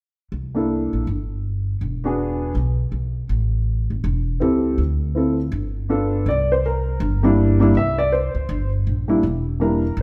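Jazz piano trio in a relaxed, sophisticated swing, cut from a longer piece, where a thumpy, pizzicato upright bass enters up front at 0.3 seconds and an intimate, slightly detuned upright piano follows at 0.5 seconds with the melody, its action noise audible and its notes ringing with long sustain, as the band plays live in a reverberant stone room and the harmony moves to a new section at 6.3 seconds.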